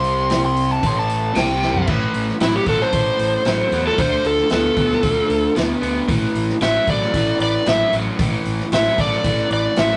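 A straight 4/4 groove at 114 BPM in A minor drives this smoky, gritty blues rock and southern rock fragment, where a vintage drum kit with a punchy kick and dark cymbals (adding a fill at 1.6 s) anchors a growly fuzz fingered bass and a bright, double-tracked overdriven electric guitar riff up front, while a dark, smooth lead guitar solos in the background over the opening moments before an overdriven slide guitar takes the melody from 2.4 s across Am and Dm chords, all captured as a rough rehearsal-room recording with tube saturation.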